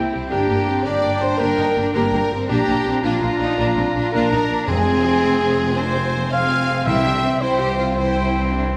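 Cinematic orchestral music in 12/8 at 110 BPM in F dorian, adventurous and swashbuckling in mood, heard as a short cut from a longer piece. A rich, focused symphonic violin section carries the melody. A warm, distant studio violin section, a mellow, airy silver flute, a soft-attack oboe and a roomy clarinet add second lines. A close-miked French horn section, the most prominent voice, holds sustained chords over a very quiet, tight trombone section, while a distant solo trumpet punctuates with stabs. Clear, lush double basses and expressive cellos anchor the bass, and smooth, even violas fill in accompaniment from 0.1 seconds. Round, soft-malleted timpani on calf heads enter in the background at 4.7 seconds and stop at 7.4 seconds, as the harmony moves through Gm, Bb, Fm and C inside a wet scoring-stage reverb.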